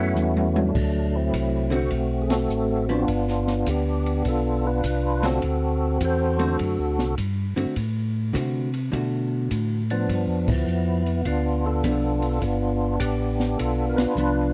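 A short drum fill opens this greasy, soulful soul jazz organ trio excerpt at 103 BPM in D mixolydian, as a fat, percussive tonewheel organ carries the swung melody over a mellow, round organ bass line, both up front with key click and slow rotary speaker, the lead adding chorus vibrato. A dark, compressed hollow-body electric guitar enters with clean picked accompaniment at 1.7 seconds, while the acoustic kit sits back with a high-tuned snare, boomy kick and rolled-off top. The band hits accents together over the D7 to G7 changes in a dry, close 1970s-style studio sound.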